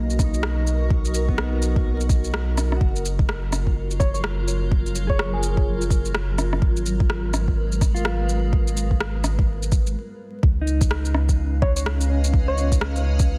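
A nocturnal, ghostly future garage excerpt at 126 BPM in 4/4, swung at 61% on the sixteenths, moving through Bmaj7, F#maj9, G#m9 and finally C#9. A cloudy, evolving granular pad holds blurred, detuned chords with slow attack and long release inside its own reverb, while a deep, round dub sub bass with tube saturation sits up front, both breathing with sidechain pumping. An overdriven electronic shaker and rim click enter first, joined a moment later by a soft, overdriven electronic kick drum that sits up front, both bathed in studio reverb. A dark, clean, fingered electric guitar supplies accompaniment through 12-bit sampler grit, analog delay and pumping, and drops out at 12.0 s. A gentle, keys-like FM lead with chorus, vibrato and analog delay appears briefly from 4.0 s and again near the end. After a short break at 10.0 s, the harmony shifts to C#9, all set in a digital ambience with vinyl crackle and a dense, heavily limited master.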